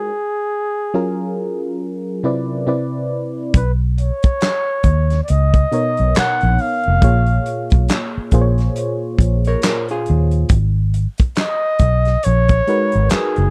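A breathy, whispered flugelhorn carries an introspective melody over a warbling FM electric piano with tremolo, drifting through F#maj7 and Cmaj9 in this soulful neo-soul R&B excerpt at 69 BPM with swung 16ths. At 3.5 s a roomy, distant soul drum kit enters with handclaps, hi-hat, a tight kick and a medium-tuned snare, and a round, foam-muted electric bass joins it a moment later as the harmony moves through Bmaj9, A#m7 and G#m9. A dark, clean hollow-body jazz guitar adds a brief second line from 9.5 to 10.5 s, and the whole recording sits dry, with little reverb.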